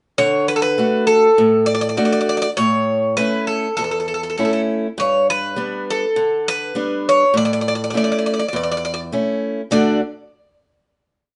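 At 0.2 s a Greek bouzouki and a picked steel-string acoustic guitar begin together in this short, hopeful Greek folk piece for a small bouzouki band, set in D major at 101 BPM in a straight 4/4 and tuned to A4 = 444 Hz. The bouzouki carries a modal melody with ornaments, its metallic double strings, some doubled at the octave, sitting up front with a touch of plate reverb. Beneath it, the parlour-style guitar plays an oompah accompaniment of bass notes and chord figures, its old strings giving a woody, boxy tone that is also placed up front. The harmony moves through D, A, G and A before settling on a final D chord at 9.7 s, and both instruments stop at 10.0 s. The whole piece sits in a wet studio reverb with a short decay and a top end that rolls off at 11.0 kHz, leaving a warm, close-knit sound.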